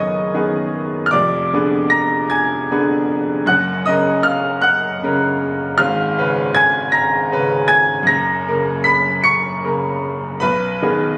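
Captured on a phone in a room with club reverb and a dulled top end, this hopeful, passionate romantic character piece for solo piano unfolds in a rubato 6/8 at 52 BPM in F# major, its brilliant, vintage-toned grand piano sitting up front with long sustain across a span from F1 to C#7 as the harmony moves from G#m7/F# through Fdim7 to F# at 3.5 seconds, on to C#7/G#, back to F#, and closes this brief 11.2-second cut on G#m/B.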